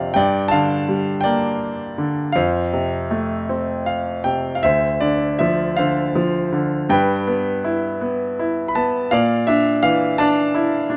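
A brief fill on a bright, up-front concert grand opens this calm, lyrical classical solo piano excerpt in an unevenly pulsed 6/8 with free rubato, its brilliant treble and deep bass ringing in light reverb as another fill at 3.5 s leads into a darker minor-key passage from 4.6 s that settles on a luminous Bbmaj7#11 chord.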